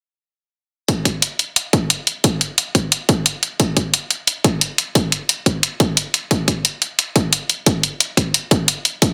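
A dense, heavily limited modern master with little reverb frames this tense, aggressive drum and bass excerpt at 177 BPM in a straight 4/4. An electronic kick drum, layered, punchy and sitting up front, plays from 0.9 to 9.1 seconds alongside an electronic hi-hat, both re-recorded in a large room, with a high-pass filter thinning the kick and its room sound. Cut from a longer piece, this single section consists of those two drum parts alone.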